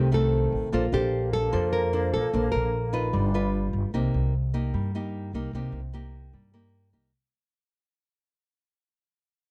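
A fingerpicked nylon-string guitar carries the melody up front, with audible finger squeak, until 3.1 seconds in this relaxed, sunny bossa nova fragment at 150 BPM, alongside an airy alto flute with vibrato in the background, a second small-toned nylon-string guitar accompanying over chords such as Bbmaj9 and G7b13, and a woody pizzicato upright bass, set in a dark, warm production with light reverb that fades out from 3.9 seconds.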